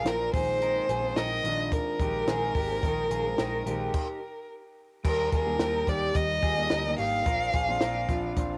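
A clear, biting violin sits up front with an airy bow and intense vibrato, carrying the melody through a cassette-tape haze in this short, youthful and nostalgic cut from a longer jangly indie pop piece at 108 BPM in 4/4. Beneath it, a full-bodied jumbo steel-string acoustic guitar is fingerpicked as accompaniment, while an electric guitar through a small old amp plays slightly broken-up, fingered arpeggios colored by analog chorus. A dark, round, foam-muted electric bass and a compact cocktail drum kit, dry and natural with a punchy kick, high-tuned snare and dusky cymbals, enter at 0.1 seconds. The harmony opens on Abadd9, and after a stop from 3.9 to 5.0 seconds the music moves to Ebmaj7 and then Bbadd9. The whole has the intimate feel of a home recording on cassette in a small room with moderate reverb.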